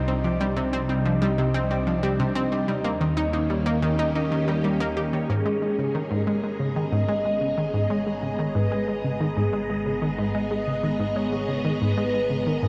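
Drenched in a huge, dark reverb, this hypnotic, cosmic passage of sequencer-driven space music moves at 92 BPM in 4/4, cut from a longer piece and settling into G# minor at 5.3 s. A bright, up-front analog pluck riff with a round, detuned sawtooth tone and a swirling, warbling string machine holding phased chords over Cmadd9 and Eb7 sit above a fat, saturated analog bass. A ringing, fingerpicked concert harp adds delayed arpeggios until 8.0 s. From 5.3 s, a mellow horn-like synth lead with lush chorus, vibrato and a cassette-tape tint carries the melody over G#madd9.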